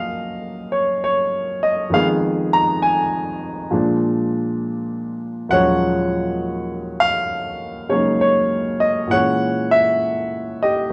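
Late-night and smoky, this short solo jazz fragment, cut from a longer piece, features a warm, natural grand piano swinging gently in 4/4 over rich minor-key harmonies such as Gbmaj9, Fm7b5 and Ebm11, its sound set back in a large studio with a lush reverb.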